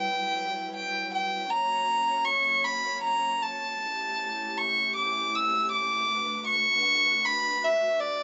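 This rough home demo mix carries a light reverb, and its top end is dull, reaching only to 7.9 kHz. The piece is an intimate, heartbroken acoustic folk-pop ballad in B minor, moving in an unhurried 3/4 at 79 BPM with a straight feel, and it is cut from a longer work. A single bowed violin carries the melody up front, its soft-attack sul tasto tone rich, pure and floating, yet with a distant quality, ranging from D5 to E6. Beneath it, a chamber string section holds sustained chords well down in the mix, bowed sul tasto with light vibrato and a close, warm ensemble sound. The harmony moves from Emadd9 through F# and A7 before settling on Bm7 at 6.1 seconds, and both parts play throughout the 8.2 seconds.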